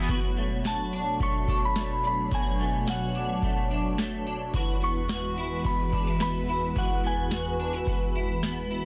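A booming, overdriven analog drum machine with a deep kick, crisp snare and metallic hats sits up front in this hazy, ethereal dream pop excerpt, over a swirling, detuned sawtooth pad washed in phaser and chorus, clean picked electric guitar arpeggios treated with ensemble chorus and tape echo, and a soft, warbling FM bell melody entering at 0.7 seconds, all moving from Bm7 to Eadd9 in light digital ambience.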